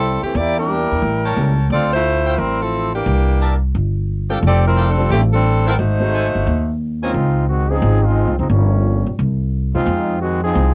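Captured as a home recording on cassette with a light reverb, this brassy, swinging jazz excerpt moves at 176 BPM in 4/4 with a swung eighth-note feel. A bright, close-miked saxophone section carries the melody up front with vibrato and a soft attack, while a woody, pizzicato upright bass on steel strings sits prominently underneath. A concert grand piano adds intimate accompaniment from the background, with audible action noise and a deep low end, and a trumpet section punctuates the opening with stabs that carry a light vibrato. The harmony is dense with extended and altered chords such as Em7b5, A7b9 and Dbmaj9, settling into Db major as the second section begins. From 7.1 s the trombone section steps forward as the featured voice, playing a second line with a soft attack until the excerpt is cut at 10.7 s.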